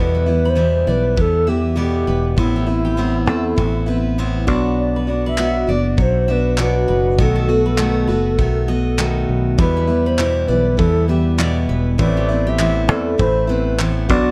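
Acoustic pop with an easy-going, carefree mood at 100 BPM and a light sixteenth-note swing, where a mellow, reedy alto flute with vibrato and plate reverb and tape echo carries the melody over a full-bodied picked steel-string acoustic guitar with audible finger squeak, a second picked acoustic guitar playing arpeggios, and an up-front fingered electric bass, while a studio drum kit with a punchy kick and handclaps comes in at 1.2 seconds and a concert grand piano with audible action noise joins in the background at 9.6 seconds, all in a dark production moving through Em, Amadd9, Bm and B7.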